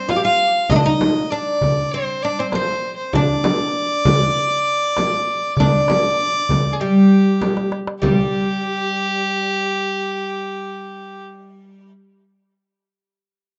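A straight 4/4 pulse carries this passionate passage from an Arabic maqam ensemble, cut from a longer piece. The woody, deep fretless oud leads the melody up front while a single bowed violin, soft-attacked and floating in sul tasto, lays a pure second line above it; a small clay-shell darbuka played with soft hands and a large, distant frame drum supply the percussion until a drum fill at 7.4 seconds and stop at 8.3 seconds. The oud and violin carry on into a new section, the violin fading out at 11.2 seconds and the oud ending near 11.9 seconds, all set in light reverb within a rough, dull-topped home demo mix.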